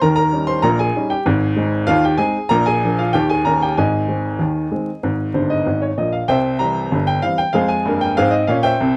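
A clear, woody upright piano sits up front and plays alone in this cheerful, playful ragtime clip, moving at 96 BPM in a straight 2/4 in Ab major and spanning G1 to C6. The piano plays a short fill from 5.3 to 6.3 seconds, and at 6.3 seconds a new section begins, its harmony shifting to C and then F minor. Close, detailed microphones capture the instrument with light reverb and vinyl crackle, and the recording is cut from a longer piece.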